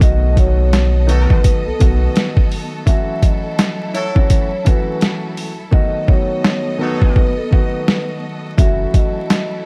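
A swung boom-bap groove at 84 BPM drives this reflective yet tough hip-hop excerpt, with gritty, pitched-down sampler drums pushed up front, a thumpy kick and overdriven crunch, while a round sine sub bass sits beneath at the start and returns briefly near the end. Over B7 and F#m7 chords, a dark, woody upright piano with a cassette-tape colour accompanies a ringing soft-mallet vibraphone melody touched with slapback echo, as bowed studio strings hold smooth sustained chords and a distant, roomy horn section adds echoing stabs from 1.1 seconds. A break arrives at 2.9 seconds, with the hi-hats dropping out later in it, and the track is set in small-room ambience and vinyl crackle.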